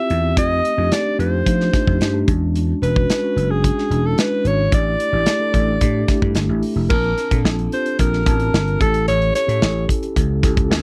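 A breathy alto saxophone and a mellow tine electric piano open this slick, nocturnal slice of polished 1980s jazz-funk pop, cut from a longer piece and moving at 110 BPM in a straight 4/4. The saxophone carries the pop-style solo melody up front, its light vibrato and smooth top set off by a slapback echo, while the electric piano's clean accompaniment shimmers through a lush chorus and its built-in speakers. A growly, amped slap bass and a modern acoustic drum kit with a punchy kick, medium-tuned snare, hi-hat and crash join almost at once, both sitting forward in the mix, the kit's top gently rolled off. The harmony moves through extended chords such as F13 and E13 before a new section at 6.9 seconds brings Bbmaj7 and A7, and the saxophone stops at 9.9 seconds while the rest of the band continues. The sound is that of a dry, close 1970s-style studio recording with light reverb, tuned to A4 = 439 Hz.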